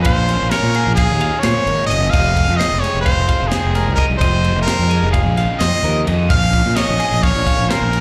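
Math rock and midwest emo in 9/8 at 259 BPM, this intricate, wistful live club fragment sets a brilliant, forceful trumpet with vibrato up front over twangy twelve-string electric guitar arpeggios with slapback echo, a biting overdriven guitar riff in the background, a fuzzy, up-front fingered bass, and a crisp fusion kit with a high-tuned snare and punchy kick, moving from Bbm7 to Fm7 and back.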